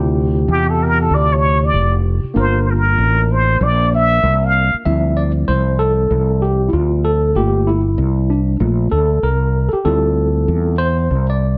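Swinging sixteenths at 96 BPM in 4/4 give this mellow, nocturnal jazz-hop excerpt a relaxed hip-hop sway, anchored by a round, up-front fretless electric bass with subtle chorus. A plunger-muted trumpet carries the melody from 0.5 to 4.8 seconds with a vintage wah-wah tone and vibrato, then the worn, slightly out-of-tune tine electric piano, lightly overdriven as if through built-in speakers, takes the solo from 4.9 seconds over Dm11 and Gm9 chords. Light reverb and a small room ambience frame the dark production.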